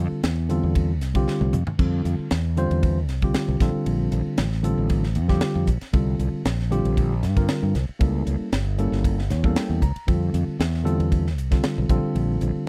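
A worn, slightly out-of-tune tine electric piano, lightly overdriven through a combo amp, opens this slick, soaring piece of electric jazz fusion alongside a bright, direct fretless electric bass, with a crisp, high-tuned snare and tight kick arriving at 0.2 seconds and a drum fill at 1.3 seconds. The lightly swung 4/4 groove moves through lush chords such as Fmaj7, Bbmaj9, C9sus4 and A7b9, and the electric piano steps forward with a fill at 9.0 seconds. The dry, close 1970s-style studio sound keeps all three parts up front, with the polished, airy drums carrying a touch of room around them in this cut from a longer piece.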